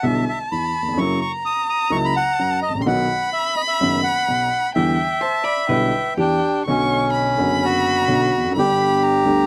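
A reedy, bright bandoneon carries the melody up front in this tense, dramatic tango fragment, joined from the start by a single bowed violin with vibrato and portamento singing a smooth, expressive second line, and by an intimate baby grand piano whose warm, long-sustaining accompaniment comes with audible action noise. In a rubato feel over chords moving from Em7 through F#7 and B, a dark, clean, picked hollow-body electric guitar adds a brief second line from 5.2 to 6.6 seconds. The music turns toward Bmadd9 and G at 6.7 seconds, all captured in a dry, close 1970s-style studio sound.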